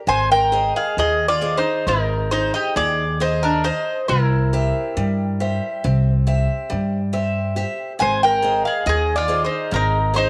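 Reflective and dark, this short cut from a longer Greek folk piece for bouzouki band moves in 9/8 at 137 BPM in eighths, gradually speeding up, with tuning at A4 = 443 Hz and chords shifting from Ab to C at 4.1 seconds and back to Ab at 8.0 seconds. Up front, the picked bouzouki carries a metallic, double-strung melody with some octave-doubled strings, while a mellow mandolin adds a second line and a boxy old ladder-braced guitar picks the accompaniment. A thumpy gut-strung upright bass, also up front, plays pizzicato beneath, and the band sits in a small room with a moderate echo chamber reverb.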